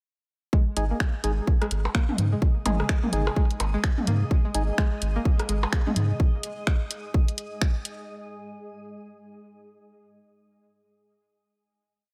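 Hypnotic and clinical, this short minimal techno piece rides a punchy four-on-the-floor electronic kick that sits up front from 0.5 s. It is joined by a round, deep analog bass on the off-beats with sidechain pumping, a house kit of programmed closed hats and finger snaps, and a minimal click kit scattering rim clicks, low toms and echoing blips in cross rhythm. A twangy, string-like resonator pluck repeats a nine-step loop that drifts against the bar in the background, colored by chorus, cassette tape and delay, while a hollow organ stab drops sparse echoing chords moved in parallel, and from 2.6 s a cloudy, detuned granular pad fades in with slowly shifting chords, all under a light reverb.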